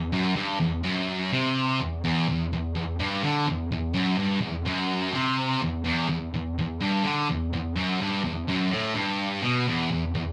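A thick, bright fuzz guitar, picked, double-tracked and up front, plays alone from 0.0 to 10.3 s between E2 and D3 in this raw, swaggering rock cut from a longer piece, set in E minor at 126 BPM in a straight 4/4 with tuning at A4 = 439 Hz, its distortion caught in a rough rehearsal-room recording with moderate studio reverb.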